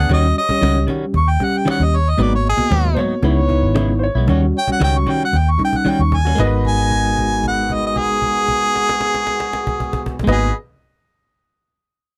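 Straight-eighth soul blues in G# minor at 114 BPM, this smoky, brooding excerpt from a longer piece is a dry, close recording with a 1970s studio character. A solo harmonica carries the melody up front with light vibrato, scooped notes and a smooth top, playing in a jazz style, while a dark, round, punchy muted fingered electric bass sits equally forward. A twangy, compressed clean electric guitar adds picked stabs colored by harmonic tremolo, and a bell-like tine electric piano supplies accompaniment alongside a horn section holding sustained chords, distant and roomy in the background. A woody cajon with faint snares keeps time, and a brilliant, polished upright piano enters at 2.9 seconds with a short-sustained second line. The chords move from D#7#9 through G#m7 and C#m7 back to D#7#9, and after a drum fill from 5.3 seconds a long note is held from 6.4 seconds over a return to G#m7.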